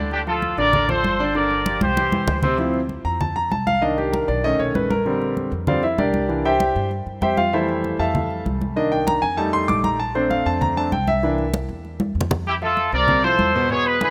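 Sunny and joyful, this brisk salsa excerpt in F major at 194 BPM opens with a punchy, vibrato-laden trumpet section over a clear, intimate concert grand piano, woody gut-string upright bass and close, dry congas, before the trumpets drop out at 2.4 seconds for a piano solo with audible action noise and long sustain, a drum fill arriving at 12.0 seconds and the horns returning at 12.5 seconds, all in a lush hall reverb and a rough home-demo mix.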